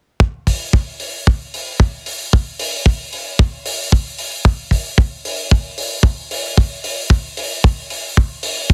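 A heavily compressed, radio-style sound with little reverb frames this short, feel-good nu-disco groove, cut from a longer piece and moving in a straight four-four feel. An acoustic kick drum enters at 0.2 seconds, tight and up front with a warm tone, a rolled-off top and a small-room ambience. At 0.5 seconds an acoustic hi-hat joins, dry and softened at the top, sitting well behind the kick in the same small room.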